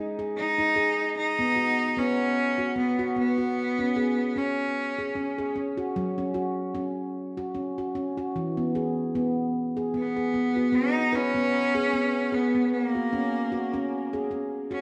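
A single bowed cello carries the melody in this meditative world piece, its bright, biting tone shaded with light vibrato and trailed by tape echo. It plays from 0.4 to 5.6 seconds, falls away, and returns at 10.0 seconds to carry on to the end. Beneath it, a stainless-steel handpan struck with the fingertips spins warm, ringing arpeggios from start to finish, sitting up front with a gentle glow. The music moves at 75 BPM in a swung 3/4, in G# minor, drifting through G#5, B, C#5, F#5 and E before settling on G#m and F#. A wet echo-chamber reverb and small-room ambience give the hypnotic mood a close yet resonant space, in a passage cut from a longer piece.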